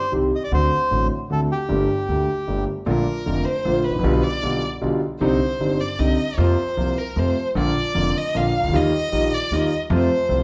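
Sultry and tense, this tango excerpt moves at 154 BPM in a rubato 3/4 in Bb major. A reedy, dark bandoneon carries the melody up front until 2.6 seconds, over a clear concert grand piano with deep bass and a woody, thumpy pizzicato upright bass. At 2.9 seconds a warm, expressive bowed violin takes over as a solo, full of vibrato and portamento, all set back in a large studio space with a wet reverb.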